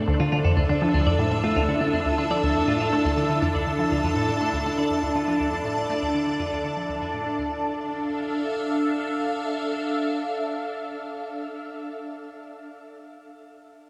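An evolving, detuned wavetable pad opens this mysterious, expansive stretch of ambient space music at 121 BPM in D minor, holding Dm7 up front through ensemble chorus, phaser and shimmer reverb, joined by a juicy, squelchy, resonant blip pluck riff in the low register, while a dark, breathy, wind-like noise texture and a twangy clean electric guitar playing arpeggios sit in the background; the guitar fades out, and it and the pluck stop at 7.6 seconds, leaving the pad to settle onto D minor in a huge, wet reverb.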